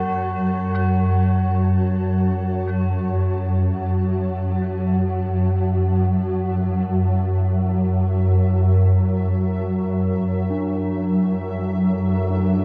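Dark ambient drone in free time and F# minor, this unsettling, ominous passage is cut from a longer piece and sits in a dark, spacious production with a huge reverb tail. A swarming, detuned drone dominates up front, its granular unison tone tense and evolving under a filter sweep. A cloudy granular pad fades in beneath it with blurred, full-bodied sustained chords, bathed in shimmer reverb. Solemn tubular bells ring out vintage, band-limited arpeggios through tape echo and shimmer until 10.5 seconds, when the harmony shifts from F#m to D/F#. Very quiet and close-miked, a bronze singing bowl adds a dry, meditative metallic ring with slow beating throughout.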